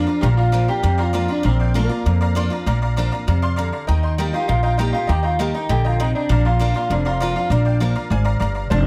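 A driving straight 4/4 pulse at 198 BPM propels this rollicking, rowdy rock clip in Bb major, cut from a longer piece and lasting just under nine seconds. The upright bass sits up front with a woody, thumpy gut-string pizzicato, anchoring the low end as the harmony moves from Bb to Eb at 3.9 seconds and back to Bb at 6.3 seconds. Carrying the melody, an electric guitar through a small old amp has a twangy, slightly broken-up tone, its picked lines trailed by analog delay. Beneath it, a picked steel-string dreadnought acoustic guitar adds full-bodied picked support, with finger squeak audible on the strings. High above, a tack piano contributes jangly, metallic, vintage accompaniment, and the whole band sounds dry, with little reverb.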